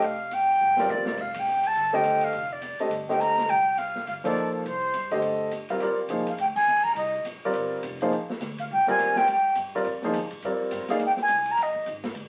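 A breathy, close-miked concert flute carries the melody from the very start of this searching, hypnotic modal jazz excerpt, swinging briskly at 208 BPM. Beneath it sit an intimate concert grand piano with audible action noise and deep bass, a woody, thumpy pizzicato upright bass in the background, and an open jazz drum kit with dark cymbals and a punchy kick that plays a fill just after the opening. The harmony holds a C9sus4 chord in C dorian, shifts to F9sus4 and F dorian at 5.8 s, and is punctuated by accents from the whole band, all coloured by a wet studio reverb and the crackle of a very old 78 rpm record.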